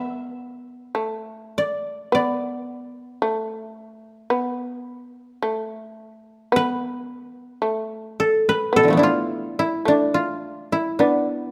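A mellow, woody koto carries the melody up front across a span from B2 to E5, alongside a buzzing, plectrum-plucked shamisen on a narrow second line, in this solitary, austere fragment of traditional Japanese chamber music, played rubato around 54 BPM in 4/4 and captured through close, detailed microphones with light reverb over its 11.5 seconds.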